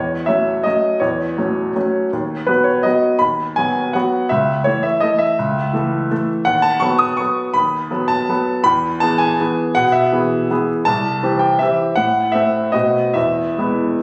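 A solo baby grand piano opens this elegant, playful classical waltz in three, its tone clear and intimate and placed up front, with the mechanical noise of the action audible beneath the notes. The rubato phrasing spans from deep bass to bright upper register, moving through inverted harmonies before a turn to C at 10.9 seconds and a brief minor shading that resolves home at 13.2 seconds. Captured on a phone in a recital hall with a moderate reverb tail, this fragment is cut from a longer piece.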